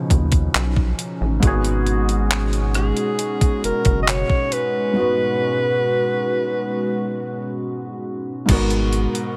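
A slow, straight 4/4 pulse at 68 BPM comes from a clean 12-bit drum machine with a thumpy kick, rim click, hi-hat, handclaps and crash cymbal, sitting up front with a tape-warm, sampler-style character in this late-night, sensual contemporary R&B piece in G# dorian. Beneath it, a rubbery square-wave bass with a resonant filter pluck and dark, bouncy tone holds the low end from 0.1 seconds, while a felt-muted upright piano supplies soft, intimate accompaniment with audible action noise. A hollow, flute-like pad, its detuned tone thickened by chorus, sustains dark chords that move from Badd9 to G#m7 and settle on G#m9. At 2.8 seconds a breathy alto saxophone takes a jazz-style solo melody with light vibrato and a smooth top, its line trailed by delay until it stops at 7.6 seconds. The room is dry, with little reverb, keeping the parts close and the mood late-night and sensual.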